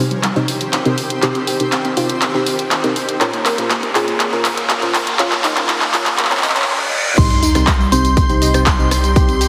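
A punchy, overdriven electronic kick drum hits up front at the drop at 7.2 seconds, joined by a round analog bass, a glassy synth bell, a distant violin section and a twinkling granular texture, in this dreamy, emotional progressive house excerpt at 121 BPM moving from Cm to Bbm and back. Before that, a build-up of filter-swept soft plucked arpeggios, deep nasal chord stabs and a shimmering ambient pad pumps under an overdriven house kit of claps, hats, tambourine, rim and crash, with a very quiet gritty breakbeat kit, a drum fill and a riser, reverse cymbal and sub drop behind it. A lush hall reverb surrounds the whole, squeezed into a heavily compressed, radio-like sound.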